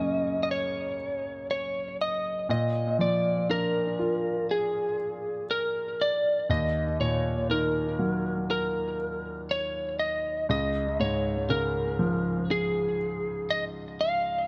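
Longing and heartbroken, this slow pop excerpt pairs a slightly broken-up, compressed electric lead guitar carrying the melody up front with an intimate grand piano accompaniment whose audible action noise sits close by, both parts trailing analog delay into an echo-heavy mix with moderate plate reverb as the chords move from Gb through Bb7 and Ebm to Db.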